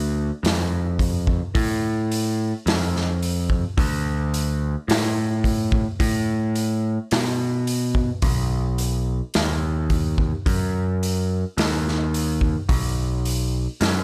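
Hypnotic and brooding, this stoner and doom metal excerpt crawls at 54 BPM in a straight 4/4, as a growling, bright picked electric bass with overdrive holds the low end from B1 to B2 from the start, joined at 0.4 seconds by a punchy, gritty garage drum kit of kick, medium-tuned snare and hi-hat in a small room with a rolled-off top, both parts up front in a dry mix.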